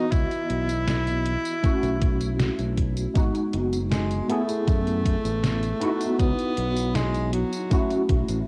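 A worn, slightly out-of-tune electric piano with a barky bite, thickened by ensemble chorus, analog delay and cassette hiss, opens alongside a warm subtone tenor saxophone carrying the melody with light vibrato and soft attack, its tone roughened by 12-bit sampler grit and tape echo. At 0.1 seconds a punchy, bright fingered bass and a thumpy sampled kick arrive up front, joined by a detuned 8-bit drum machine of hi-hat, medium-tuned snare and tambourine, the drums re-recorded in a large room and softened by tape. This hazy, woozy vaporwave fragment drifts at 79 BPM in 4/4 through a rootless C#m11, then B7sus4, G#m7 and F#m11 chords, with the sound of a home cassette recording in a small booth.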